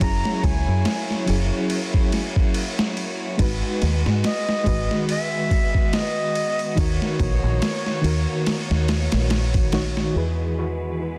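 Trip hop at 71 BPM in 4/4 with a swung sixteenth-note feel, this dark, brooding fragment from a longer piece moves through F#7, G#m7 and D#m7 before settling on E. A deep dub fingered electric bass, round and foam-muted, sits up front beside a dusty soul sampler-style drum kit. The kit's thumpy kick, medium-tuned snare and ride cymbal are compressed, gritty and overdriven. A reed electric piano supplies clean accompaniment with tremolo, while a rich studio violin section holds smooth, distant bowed chords under a low-pass filter. The jazz flute carries the melody with an airy, metallic tone, crisp chiff and expressive vibrato, sharing tape echo and vintage 12-bit sampler grit with the piano. The flute stops at 9.3 seconds and the drums at 10.1 seconds, leaving bass, piano and strings to close at 11.2 seconds in a dry, dense, heavily limited modern master.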